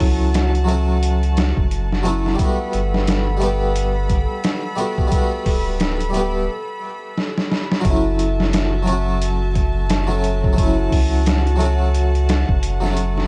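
A swung, brooding trip hop groove at 88 BPM in 4/4 rides on a gritty, pitched-down sampler-style kit of thumpy kick, medium-tuned snare and hi-hat with vintage 12-bit crunch, over a deep, round sine sub bass sitting up front. A close-miked, brilliant harpsichord plays accompaniment in F# phrygian with tremolo and tape echo, moving between F#m7 and Gmaj9 under a filter sweep that runs through the first section, while a break at 6.5 seconds and a drum fill lead into the second section at 7.8 seconds. Floating, soft-attack studio strings hold sul tasto chords high above, all within a digital ambience in this melancholic excerpt cut from a longer piece.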